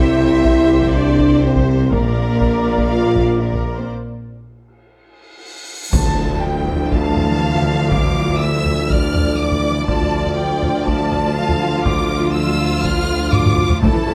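Epic cinematic orchestral film score, dark and relentless, in which a lush, expressive violin section carries the melody over a second, focused violin line, bowed violas, mellow horn chords and a bass of clear tuba with rich cellos and double basses in the background. Taiko ensemble drums struck with hard sticks in a live room drive the music from 0.4 s. Toward the end of a break, a huge, dark cymbal swell rises into an impact at 5.9 s, joined by a brief stroke of round, soft-mallet timpani, as the music, set in light reverb, shifts to a new section.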